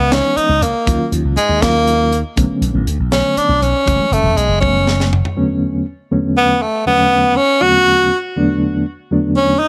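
Nocturnal and intense, this electric jazz fusion fragment in 6/8 at 80 BPM sets a bright, vibrato-laden tenor saxophone up front with tape echo over a reedy electric piano shimmering with fast tremolo, a growly, punchy slap bass through an envelope filter and a tight funk kit with a high-tuned snare, moving through minor-ninth chords until a drum fill at 4.6 seconds, after which the bass drops out at 5.2 seconds and the drums at 5.4 seconds, leaving saxophone and piano to hover over an E13sus4 in light reverb.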